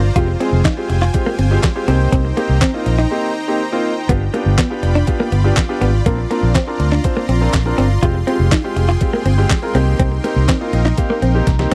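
Dry and close in a 1970s-style studio sound, this bittersweet, energetic dance-pop excerpt sets an overdriven, thumpy 8-bit drum machine and a dark, foam-muted fingered bass up front, the bass pumping with sidechain, beneath a lush detuned supersaw pad holding sustained chords that pump along with it, a direct-recorded clean guitar riff glazed with chorus, and a clear, polished baby grand piano that plays accompaniment, then a fill from 10.5 seconds, after a brief break at 3.1 seconds.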